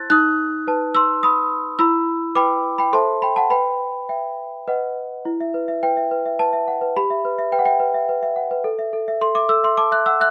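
Eerie and fragile, this classical lullaby in three-four time features a worn celesta playing alone throughout, its bell-like, sweet tone sitting slightly out of tune and up front in a close-miked sound with light studio reverb, moving into a new section at 5.3 seconds before the rough home demo mix is cut off at 10.3 seconds.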